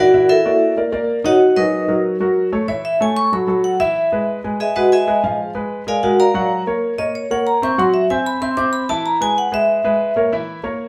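Captured live in one room with a wet studio reverb, this lively, sophisticated jazz fragment in B major moves at 188 BPM in straight 4/4, as an up-front vibraphone with medium-hard mallets takes a metallic, ringing solo shaded by medium motor vibrato while an intimate concert grand piano, with deep bass and audible action noise, accompanies through rich altered and rootless harmonies until 10.9 seconds.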